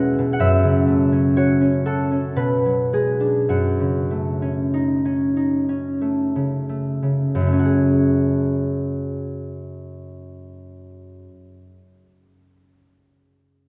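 Bathed in a wet, cavernous church reverb within a dark, warm production, this gentle and mysterious classical fragment features a solo concert harp, fingerpicked and ringing up front from E2 to F#5. It drifts in rubato 3/4 at 43-64 BPM in F# minor, slowing over its opening 7.4 seconds through F#m7, Bm6 and F#m6 before settling onto an F#madd9 passage that runs to 11.2 seconds.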